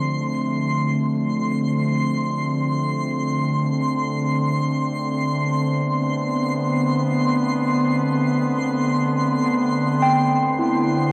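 An airy, breathy pad sits up front in this serene, reflective ambient piece, holding soft sustained chords through a chorus effect while a filter sweep moves across its detuned, noise-flecked tone. The harmony rests on Dm7 before shifting to Amadd9/D at 3.2 seconds, unfolding in free time with slow attacks and long releases. High above, a twinkling granular texture adds a sparkling, octave-up shimmer bathed in its own built-in reverb. At 10.0 seconds a clean, direct tine electric piano enters with arpeggios. The whole recording is drenched in a huge, wet ambient reverb and carries the worn, warbling pitch drift of old cassette tape, lending this short excerpt a hazy, dreamlike quality.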